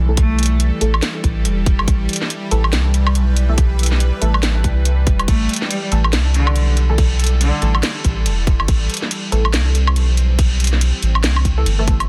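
A tense, string-like drone with phaser and vibrato and a round, mellow sub bass open this heavy, meditative deep dubstep drop, which has a swung half-time feel, while muted, detuned chord stabs with chorus and dub echo sit lower in the mix. A tight, up-front electronic kick and a garage kit of cracking snare, hi-hat, woodblock and crash cymbal carry the groove. A biting, distant bowed cello plays a brief melody at 0.2 seconds and returns from 5.3 to 7.7 seconds, trailed by dub echo, all within a dry, dense and heavily limited mix.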